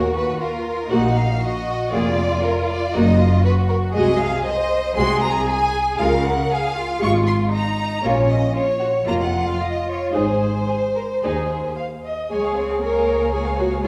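A string orchestra opens with all five sections bowing together: a violin melody set up front, a second violin line beneath it, violas filling in the accompaniment, and cellos and double basses sharing the bass. This quick classical-period movement feels graceful and spirited, its rubato phrasing giving the line a gently elastic pulse. Every section has a rich, vibrato-laden tone, with a focused edge in the violins, violas and basses, while the cellos sound smooth and even. The harmony starts in minor chords and brightens into major around 4.0 seconds, and a brief new section arrives at 12.3 seconds before the cut at 13.9 seconds. The ensemble is heard from further back in a recital hall with a generous, wet reverb, and a faint mains hum sits under the sound.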